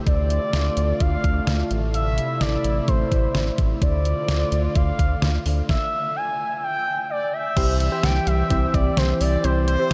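Synth-pop at 128 BPM in a cool, melancholic mood, this short excerpt sets a shimmering, chorused pulse-width pad under a smooth portamento lead with vibrato and tape echo, while a round, deep analog bass and a detuned 8-bit drum machine with a thumpy kick and fat snare sit up front over Dm and Am chords. A stop arrives from 5.7 to 7.6 seconds, after which mellow analog keys with a filter sweep slip in quietly on a C chord. The whole mix is dreamy and soaked in a huge ambient reverb.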